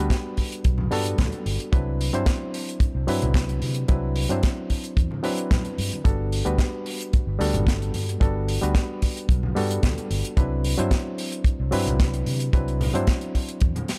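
Feel-good and groovy, this nu-disco excerpt rides a straight 4/4 pulse, with a barky, reedy electric piano up front carrying lightly overdriven chords through sidechain pumping and dub echo, a growly, amped fingered bass with tube saturation, a tight, up-front acoustic kick and a dry funk kit with a high-tuned snare and hi-hat in small room ambience, and very quiet, distant congas played with soft hands entering at 0.8 seconds, all shaped by a dark production with little reverb over Gmaj9 and Cmaj9#11 harmonies.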